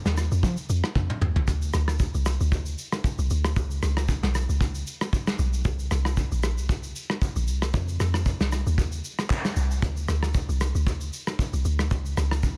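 Late-night and hypnotic, this amapiano passage moves at 115 BPM in 4/4, with a gentle swing on the 16th notes. A deep, round log drum bass carries the low end from Bb1 to F3. Its FM tone has a noise layer, a fast attack and a decaying, percussive body, and it sits up front. Alongside it, a soft brush drum kit enters at 0.1 seconds, recorded in a small room with a dark, smooth, rolled-off top end: kick drum, snare drum, toms, hi-hat, rim click, shaker and handclaps. Brushes play a medium-tuned snare beside a punchy kick, with soft clipping on both. A short drum fill arrives between 1.0 and 1.5 seconds, and the whole passage is dry and close, finished with a dense, heavily limited modern master.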